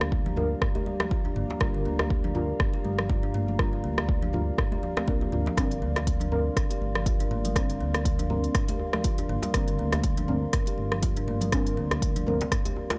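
A warm, spiritual afro house groove, cut from a longer piece, rides a swung sixteenth-note feel over a single Bbadd9/G chord throughout. A deep electronic kick sits up front, entering at 0.1 seconds, while a produced afro-pop kit adds crisp hi-hats, rim clicks and toms. Congas with a thin, damped skin and a tight, cracking djembe played with soft hands sit in the background. A smooth, dark synth bass with portamento glides through the low register, thickened by tube saturation. A dark analog pad holds slow-attack chords with a moving notch and vintage sampler grit, and a deep, mellow chord stab with chorus, phaser and analog delay punctuates them. A woody, ringing kalimba plays arpeggios through analog delay from 0.3 seconds, and the pad, stab, bass and kalimba all carry sidechain pumping in a dry, gritty hardware sound.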